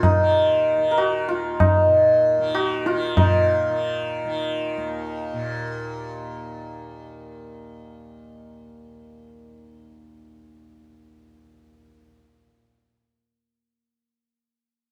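A hammered, shimmering santur sits up front in this meditative, solemn Hindustani classical fragment, its ringing melody bathed in plate reverb until it stops at 6.8 seconds. Beneath it, a softly plucked, buzzing tanpura drone holds low and quiet to 12.5 seconds, while a high-tuned tabla, close and dry, plays only until 3.4 seconds. A wet studio reverb places the performance further back in the room.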